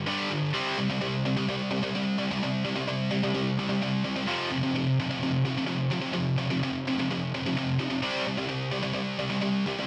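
A bright, double-tracked electric guitar plays alone and up front through this short, heavy and aggressive metal excerpt in a straight 4/4, its picked high-gain tone soaked in distortion and touched by digital delay inside a moderate studio reverb as it drives through G5, C5 at 0.6 seconds, F5 at 4.3 seconds and back to C5 at 8.0 seconds.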